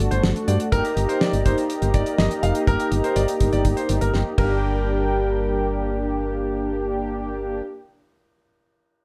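A straight 4/4 groove from a damped, dry 70s drum kit with a fat snare and tight kick drives this melancholic, nocturnal synth-pop excerpt, closing with a drum fill at 4.1 seconds before the kit stops, while a punchy, round FM bass holds the low end up front. Mellow synth brass, detuned with vibrato and chorus, carries the accompaniment over a bold, brassy analog pad with a soft attack, filter sweep and chorus, as the chords move from D to Eb and reach G minor at 4.4 seconds. A brilliant concert grand piano plays a short-sustained second line through digital delay until 6.0 seconds, set in a moderate studio reverb.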